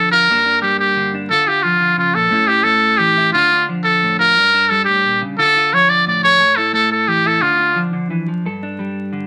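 A rolling 12/8 pulse at 118 beats per minute in dotted quarters, played straight, drives this short highlife passage cut from a longer piece. Set in D harmonic minor, it carries a bittersweet, warm mood as the harmony circles from G minor to D minor and A, and later colours those moves with a G minor add9 and an open A5 before coming to rest on a suspended G. Up front, a solo trumpet with a metal mute sings the melody between F4 and D5 in a jazz style, its tone buzzy, thin and brilliant, with a light vibrato. Beneath it, a clean, picked electric guitar supplies the accompaniment across a range from G2 to A4, its sound compressed and sitting well behind the horn. The trumpet drops out at 7.8 seconds, leaving the guitar alone until 9.3 seconds. A moderate studio reverb and a layer of vinyl crackle give the recording an aged, lived-in feel.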